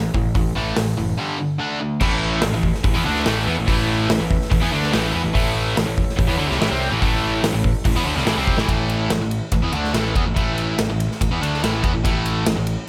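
Hard rock at 144 BPM in a swaggering, anthemic mood, this excerpt opens with two bright overdriven picked guitars riffing behind a fuzzy, punchy picked bass and an up-front acoustic drum kit with a punchy kick, crash, ride, hi-hat and medium-tuned snare, as chords move from A5 through G5 and D5 before a double-tracked high-gain guitar joins at 2.0 s, a very quiet icy, crystalline pad with chorus rises in at 2.8 s, both drop out at 8.7 s after a drum fill, and light reverb sits over it all.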